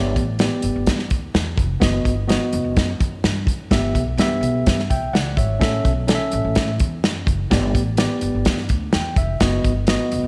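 A moderate echo-chamber reverb with a 1.7-second tail and a small-room ambience gives this short cut from a longer piece a roomy, vintage feel. It is uptempo 1960s-style soul in 4/4 at 126 BPM, with a straight, danceable and uplifting groove. The acoustic drum kit sits up front with a tight kick, a medium-tuned snare, hi-hat and a rolled-off top, coming in at 0.2 seconds. A plucked upright bass with steel strings adds a woody, growly low end. A clean tine electric piano, heard through its built-in speakers and placed up front, carries the accompaniment through G, B/F#, Em/G and A before returning to G and B/F#. The piano adds a brief fill at 8.7 seconds.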